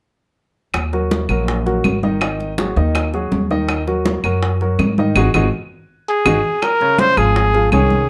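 A brisk 163 BPM Afro-Cuban jazz groove in straight 4/4 starts at 0.7 seconds with ringing, soft-handed congas, low-tuned bongos struck hard with a compressed, saturated edge, and woody claves, over a dark, thumpy gut-string upright bass plucked up front. A natural grand piano comps through a sunny, danceable vamp between Ebm and Ab5, with a band accent from 5.2 seconds and a drum fill from 5.7 seconds before the harmony settles on Dbmaj9. At 6.1 seconds a mellow, close-miked trumpet takes the solo up front with breathy, soft-attack scooped notes and vibrato, set in light reverb, in this short cut from a longer piece.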